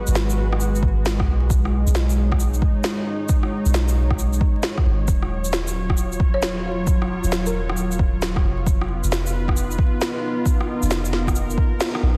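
Nocturnal and wistful, this future garage excerpt sets a moody, detuned sawtooth pad pumping under sidechain against a round, soft 808-style bass and an overdriven, up-front kick with woody snare, shaker and rim click re-recorded in a large room, while a dry, rustic marimba slips in briefly in the background with tape echo from 6.3 to 7.8 s, all over vinyl crackle, before the kick drops out at 11.8 s on a band accent.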